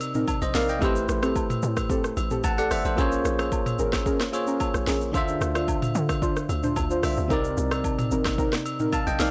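Deep and hypnotic, this short amapiano excerpt moves at 111 BPM in a straight 4/4 through minor-seventh chords starting on Cm7, with a bell-like, barky tine electric piano up front alongside an electronic afro-pop kit of deep kick, sharp snare, smooth hats, rim clicks, shaker and toms. A soft, dark, detuned chord stab with chorus and analog delay joins at 0.1 s, and a hollow, bouncy log drum bass with a noise layer and transformer saturation enters at 0.4 s, while agogo bells, woodblock, egg shaker and group handclaps sit lower in the mix. The sound is dry and gritty, with a band-limited top end.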